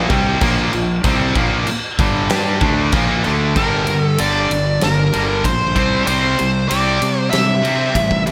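A high-gain lead guitar, distorted with delay and sitting up front, enters at 3.6 s and carries the melody in this heavy, driving hard rock excerpt in G dorian at 96 BPM in a straight 4/4. From the start, two bright, picked, distorted guitars play the riff, one tight and the other compressed in the background, over a growly, overdriven fuzz bass and a huge arena drum kit with a fat snare, punchy kick, crash and ride cymbals, and gated reverb. The harmony moves from Bb5 to Gm and then to C, and the whole sound has light reverb and a bright 1980s-style digital production.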